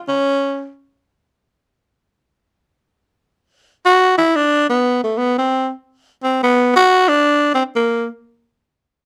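In free time, a lone tenor saxophone carries this brief jazz excerpt, its mood swinging and sophisticated. The horn speaks first in a short phrase near the very start, then falls silent until it returns at 3.9 seconds and plays on to 8.1 seconds. Its tone is breathy and gritty with a soft attack, and a growl runs through the sound, placing the unaccompanied solo up front in the jazz tradition. The line stays within a compact middle range, from A3 to F#4. Close, detailed microphones catch every rasp of the reed, while light reverb adds a touch of room around it.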